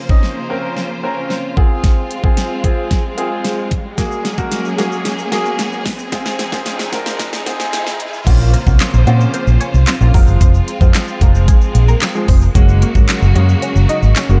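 A knocking kick, fat snare and crisp hats from an up-front, layered electronic pop drum kit drive this bittersweet, energetic dance-pop excerpt in Bb minor at 112 BPM, with crash cymbal and handclaps adding punch. A clear, polished baby grand piano with lush chorus and a smooth, vibrato-rich studio string section both pump under sidechain compression as they carry a chord cycle of Bbmadd9, Fm, Gbadd9 and Ab6. The opening 8.3 seconds form a build-up with a drum fill and a filter sweep, while a very quiet electronic riser enters at 2.2 seconds and a grainy, bright egg shaker sits in the background from 4.0 seconds. At the drop, 8.3 seconds in, a dark, round, foam-muted vintage electric bass arrives up front with sidechain pumping. Just after, a detuned sawtooth unison pluck with a noise layer and a moving notch takes the melody, its fast attack and mellow decay colored by analog chorus and delay. 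Light reverb and a high-pass filter frame the whole mix.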